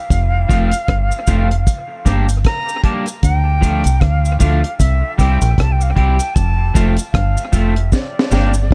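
A distant, airy jazz flute with breathy chiff and vibrato opens this serious, meditative roots reggae excerpt, trailing dub echo through an echo-heavy small room. It is quickly joined by a round, foam-muted fingered electric bass up front, a dark, dry drum kit with a high-tuned snare and tight kick, a soft cabasa, and a twangy, slightly broken-up guitar with subtle chorus and dub echo, before a drum fill at 7.9 seconds.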